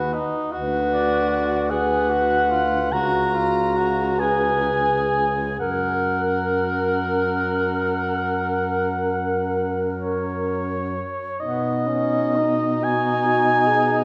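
Serene and unhurried, this short passage from a longer classical piece for single-reed quartet moves in a rubato 12/8 at roughly 39-52 BPM, counted in dotted quarters, in F# major with the tuning set to A4 = 438 Hz. A mellow soprano saxophone carries the melody up front, its tone smooth on top and touched with light vibrato. Beneath it, a dark clarinet sings a second line with a similarly polished upper edge, while a warm tenor saxophone fills in the accompaniment with vibrato, sounding distant and roomy. A baritone saxophone anchors the bass with its own vibrato, and all four play together from the opening to the close at 14.0 seconds. The lush reverb of a concert hall, lingering about 2.1 seconds, wraps the ensemble as the harmony drifts through the opening material before turning to a new section at 11.4 seconds, arriving on B.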